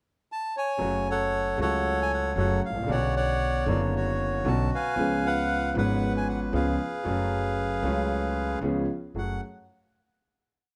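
Bandoneon leads this short, complete tango piece, its reedy melody built from motifs in period phrases and set up front with a plate reverb. It enters alone at 0.3 s on a pickup before the concert grand piano and pizzicato upright bass join at 0.8 s, both playing the tango rhythm of uneven groups of three and two eighths. The piano sounds smooth and vintage with a deep low end, while the bass is woody, acoustic, on steel strings. At 115 BPM in 4/4 with a rubato feel, the music moves through F# harmonic minor over chords such as F#m, Bmadd9 and C#7, settling on F#madd9 as a final chord at 9.2 s. The mood is melancholic and passionate, and a moderate large studio reverb surrounds the trio.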